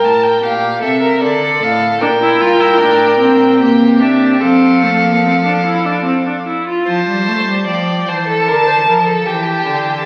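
Two bowed violins, one carrying a focused, vibrato-laden melody and the other an up-front second line with a smooth top, open together over a rich cello bass in this stately yet lively baroque-style fugue for string quartet in F major at 75 BPM in 3/4, with an expressive viola adding portamento-tinged accompaniment from 2.0 to 6.9 seconds, all heard through a recital hall's lingering reverb and the crackle of a very old 78 rpm record in an excerpt cut from a longer piece.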